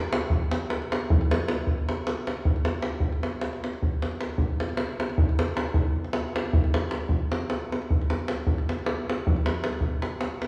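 A tight, vintage-sounding davul sits up front from the first moment of this restless, virtuosic Balkan folk fragment, driving a straight 7/8 through 10.5 seconds with a band-limited tone that blooms into the wet reverb of a recital hall.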